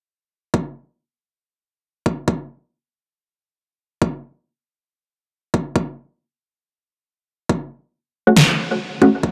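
A deep, overdriven electronic kick opens this heavy, cavernous deep dubstep excerpt at 0.5 seconds, sitting up front with a half-time, swung feel and a small-room character. Near the end, at 8.3 seconds, a muted, full-bodied sawtooth chord stab with a filter pluck and fast attack arrives, coloured by phaser, lush chorus and dub echo. A fat, tape-warm electronic snare hits at 8.4 seconds, and light digital ambience rounds out the mix.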